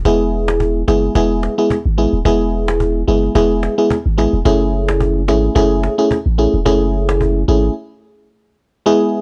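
A lightly swung sixteenth-note afrobeats groove carries this sunny, romantic excerpt, with a snappy, close cajon struck with hard hands and roughened by vintage sampler grit, a deep, punchy sine sub bass with a pitch-drop attack, and an up-front, glassy FM electric piano whose bell-like, chorused tone warbles over a move from E to F#m7, until bass and cajon stop at 7.7 seconds and leave the piano alone in a dry, saturated hardware recording.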